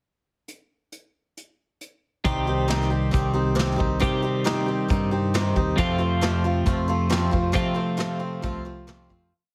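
A bright, twangy twelve-string electric guitar rings out clean, compressed chords as the riff in this short, wistful folk rock and heartland rock piece in C dorian, moving at 136 BPM in a straight 4/4. A soft brush drum kit opens alone with a pickup bar at 0.5 seconds, its distant, roomy sound carrying a medium-tuned snare, tight kick and hi-hat in a rock groove. At 2.2 seconds the verse arrives, and a boxy, up-front picked acoustic guitar joins with swing-style eighths strumming in open chord shapes, while a deep, dark dub bass, fingered and round, sits locked to the kick drum. The harmony rests on Cm before shifting to F at 5.8 seconds. Moderate studio reverb and a heavily compressed, radio-style finish shape the sound, and the whole piece fades out from 7.5 seconds.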